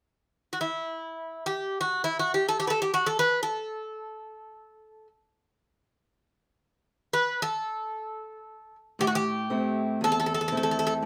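A mellow, metallic Greek bouzouki carries the melody up front from 0.5 seconds, its double strings and partly octave-doubled courses giving this dark, melancholic Greek folk passage a picked voice. At 9.0 seconds a boxy parlour-style steel-string acoustic guitar enters with fingerpicked accompaniment on an A minor chord, playing alongside the bouzouki briefly before sounding alone through 11.1 seconds. A moderate studio reverb adds a modest sense of space to this short section cut from a longer piece.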